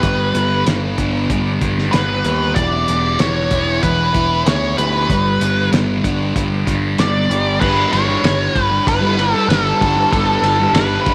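Dark and trippy, this psychedelic rock excerpt moves at 95 BPM in a straight 4/4, with an up-front octave-fuzz lead guitar carrying the melody through wah, distortion and tape echo over a thick, double-tracked fuzz guitar riff colored by phaser, moving through G and E minor. Beneath them, an overdriven picked electric bass sits round and punchy, while a cloth-damped drum kit thuds with a fat snare, tight kick and muffled, dark cymbals in a gritty, lo-fi small-room sound. At 7.6 seconds a distant, very quiet bowed string section enters with soft-attack sustained chords, vibrato and portamento, all under a light reverb.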